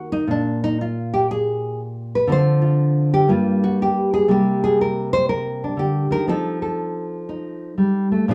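A wet studio reverb lends this short passage from a longer solo jazz performance a roomy, slightly distant sound, while a fingerpicked nylon-string guitar sits up front with a deep, classical acoustic tone, swinging in a relaxed, playful 4/4 through Dm7, Gmmaj7 and F7 over about 8.3 seconds.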